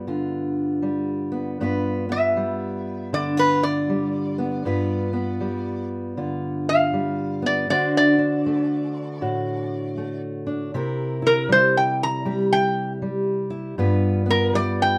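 Acoustic country blues with a laid-back, soulful mood, this excerpt moves at 79 BPM in 4/4 with a swung eighth-note feel in G mixolydian. A fingerpicked steel-string acoustic guitar carries the accompaniment from the start, its warm auditorium-body tone sitting up front across a range from G2 to C5. At 2.1 seconds a metal-body resonator slide guitar enters with the melody, played with fingerpicks and a steel bar, its metallic, nasal voice standing slightly louder than the accompaniment between Bb4 and Bb5. The harmony runs from G7 to D7 and C7 before returning to G7 at 13.8 seconds. A moderate studio reverb gives both guitars a natural sense of space.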